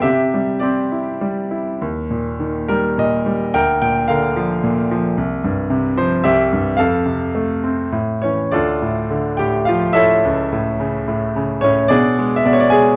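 Sunny and warm, this lyrical classical excerpt for solo piano moves in a rubato 3/4 at roughly 97-112 BPM, drifting through Cadd9, Eb and Bb/D before settling on F and A. At 8.5 s the harmony turns toward D harmonic minor, passing through Dm and A/C# to a closing E7/B. The grand piano sounds brilliant and natural with a short sustain, placed up front in a moderate recital hall reverb within a dark overall production.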